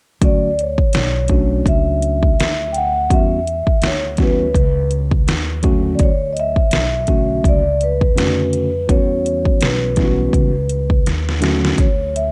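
From 0.2 seconds, vibraphone, electric piano, upright bass and drums begin together in a smoky, mellow jazz-hop groove with a lazy swing on the sixteenths, heard as a cut from a longer piece. The soft-mallet vibraphone carries the melody with a metallic, ringing tone, motor off, sitting forward in the mix and trailed by analog delay. Beneath it, a worn, slightly out-of-tune tine electric piano voices the accompaniment as if through its own built-in speakers, while the pizzicato upright bass gives a woody, thumpy gut-string bottom. The electronic, layered drum kit sits up front with a punchy kick, a deep snare and metallic hi-hats, all roughened by vintage 12-bit sampler grit. The harmony drifts between Dmaj7, Em69 and D#m7b5, and a drum fill from 11.1 to 11.8 seconds turns back to Dmaj7 just before the electric piano stops at 11.9 seconds. Light reverb and a dark, warm production keep the whole passage hazy and intimate.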